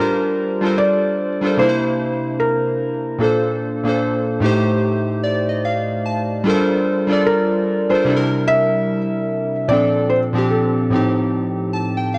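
A swung sixteenth-note lilt at 74 BPM in 4/4 sets a slow, hazy hip hop pulse for this reflective passage in G minor, tuned a touch flat at A4 = 435 Hz. A felt-muted upright piano carries the melody between A4 and E5, its tone soft, mellow and intimate, sitting a little behind the accompaniment. Round analog synth keys, which stand up front, fill out the harmony from A2 to A5 with detuned, wave-folded tones that have a fast attack and a decaying tail, a filter sweep, and a chorus and cassette-tape wash. Those keys step forward with short fills at 4.8 seconds and again at 11.3 seconds. The chords cycle through Gm11, C9, Bbmaj9 and Am7b5, then return and close the second time on F7/A. A moderate spring reverb and a small room lend the whole passage a cozy, dreamy space, and the excerpt is cut from a longer piece.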